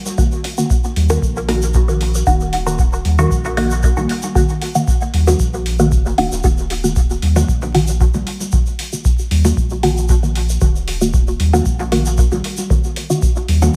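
Dub techno at 115 BPM in Eb minor, meditative and hypnotic, built on a single Ebm chord across this short excerpt cut from a longer piece. A muted, dark, full-bodied sawtooth chord stab sits up front with a filter pluck, phaser, sidechain pumping and dub echo, while a filter sweep runs across it for the full 13.8 seconds. A deep analog kick and metallic tape-warm hi-hats drive the groove, congas pump with dub echo in the background, a grainy, bright tube shaker adds live-room texture, and a round, soft sub bass enters at 1.0 seconds, all set in light digital ambience with vinyl crackle.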